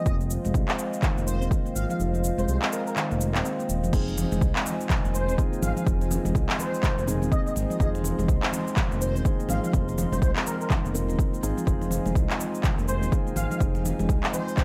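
Afro house with a hypnotic, spiritual mood, this short cut from a longer piece rides a swung 4/4 groove over a single Fm7 chord. A punchy, up-front electronic kick anchors the beat alongside a layered deep house kit of crash cymbal, handclaps and shaker, though the kick drops out between 2.0 and 3.9 seconds. A smooth, sawtooth-and-triangle synth bass with vibrato and a ring-modulated edge pumps against the kick, while a ringing handpan of nitrided steel plays meditative arpeggios touched by tape echo. A deep, detuned analog pad with a slow attack and wave-folded tones holds moody sustained chords under an expressive synth lead that sings the melody through ensemble chorus, a moving notch filter and tape echo. From about 3.9 seconds a felt-muted upright piano adds soft, intimate stabs with audible action noise, and distant congas in a large room join at 4.1 seconds, all in a dry mix.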